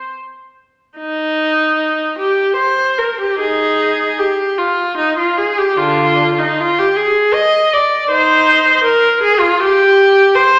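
Bathed in the wet reverb of a scoring stage with a 1.5-second decay, this short fragment of a grave, flowing baroque-style suite movement in 3/4 features a single unaccompanied viola, up front and rich-toned, bowed with vibrato, portamento and expressive rubato across a range from D3 to Eb5 for its full 10.6 seconds.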